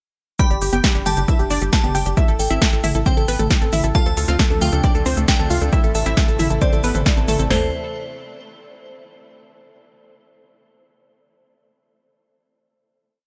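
A detuned sawtooth unison pluck leads this bittersweet, emotional uplifting trance drop at 135 BPM in A minor, repeating a sixteenth-note riff over a pedal note in octaves with sidechain pumping and digital delay, while a second unison pluck runs a 16-step arpeggio in the background. Punchy layered dance drums drive a four-on-the-floor kick with crisp hats, shaker, toms and a snare backbeat, joined from 0.5 seconds by a tight, rolling sixteenth-note sequencer bass, as a glassy FM synth bell plays its own repeating riff and a very quiet, intimate grand piano doubles the anthem line over G, Am, Dm7 and Am. A thick, chorused unison pad enters at 3.9 seconds with sustained chords, and the dry mix closes on a final chord at 7.5 seconds.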